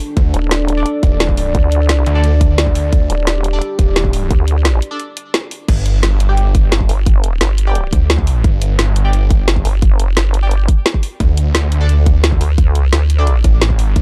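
A brooding analog pad with lush chorus opens this aggressive, dark technical drum and bass piece at 174 BPM, quickly joined by a snarling, growling distorted saw bass with tube saturation and sidechain pumping, a tight, up-front electronic kick, a drum kit with a woody snare, bright hats and crash, a nasal vowel-sweep wobble bass that drops out between 4.8 and 6.9 seconds, and a quiet band-passed chord stab coloured by phaser, cassette tape and digital delay, all in a dry, dark production where the pad stops as a short break ends at 5.7 seconds.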